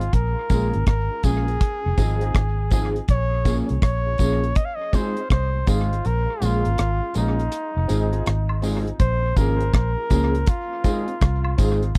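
A clear, vibrato-laden flugelhorn with tape echo opens this hypnotic, serious roots reggae passage at 81 BPM in Bb minor over a dark, round, foam-muted electric bass and an up-front, dry drum kit of hi-hat, tight kick and rim click, joined at 0.5 seconds by a clean, fingered guitar with chorus and echo in the background, intimate boxy grand piano stabs with audible action noise, and faint tambourine and woodblock, all cycling between Bbm7 and Fm7 in a close 1970s-style studio sound while the kick drops out from 6.0 to 9.0 seconds.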